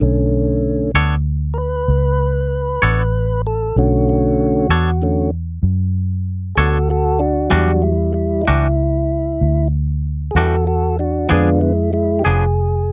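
A mournful, soulful slow blues in B minor, moving at 64 beats per minute in 12/8 with a straight feel, this excerpt is cut from a longer piece. The tonewheel organ takes the solo role from the start, holding sustained chords through a slow rotary speaker, its clear, clean tone marked by vibrato and a touch of key click. Beneath it, a vintage muted fingered electric bass supplies a dark, round, punchy low end, its foam-muted notes sitting firmly up front. A twangy electric guitar joins at 1.0 seconds as accompaniment, picked and compressed with tremolo, and drops out at 12.4 seconds. The harmony moves from Bm9 to Em9 at 7.5 seconds and on to Fdim7 at 11.3 seconds. The sound is dry and close, in the manner of a 1970s studio recording with little reverb.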